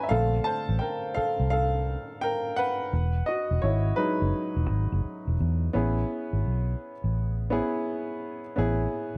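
The recording has a dark, warm studio sound with a moderate reverb that lends the room a short, gentle tail. This is a soulful, smooth slice of R&B and neo-soul, cut from a longer piece, moving at 85 BPM in 4/4 with a 16th-note swing that gives it a relaxed, lilting feel. A warm grand piano sits up front as the accompaniment, natural and intimate in tone, with its action noise audible. From the opening it also carries a solo that runs until 5.7 seconds. Underneath, a vintage muted fingered electric bass, amped and round with a foam-muted thump, holds down the low end and sits close to the listener. The harmony moves from A#maj9 to Emaj9, then settles on Amaj9 as a second section begins at 5.7 seconds.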